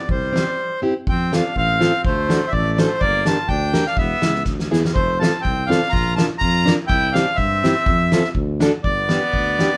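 A reedy, smooth accordion carries the melody up front in this jolly, festive alpine folk dance-band piece in F major at 123 BPM in a lightly swung, rubato 2/4, over a dark, close-miked tuba bass line, a full-bodied fingerpicked jumbo steel-string guitar with fresh strings, a distant, roomy drum kit with a fat snare, punchy kick and rolled-off top that plays a fill at 4.5 seconds, and a clear, classical-style trumpet second line in the background, heard as a band playing live in one room with moderate studio ambience.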